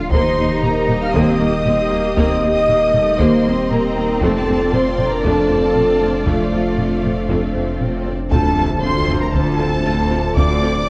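Lush, vibrato-laden violins open at once on the melody over smooth violas, a hollow chorused pad, a clean sine sub bass and bowed cellos; almost immediately this futuristic, vast hybrid orchestral and electronic film cue at 117 BPM in D phrygian gathers a distant second violin line, dark French horn chords, ringing harp-like synth pluck arpeggios with tape echo, double basses, and close, dry taiko hits, while an electronic swell from 7.2 s gives way to an impact at 8.3 s, all bathed in a big scoring-stage reverb and a worn, warbling cassette-tape drift.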